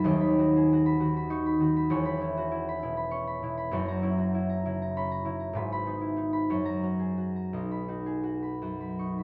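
In a rubato 6/8 at roughly 54-67 BPM, this dreamy, graceful classical excerpt in B major features a solo concert harp, mellow, thumb-plucked and ringing up front across a range from D#1 to C#6, moving through chords from B/D# and C#m7/E to F#7, G#m and F# before settling on B at 7.5 seconds, all bathed in a moderate stone-room reverb.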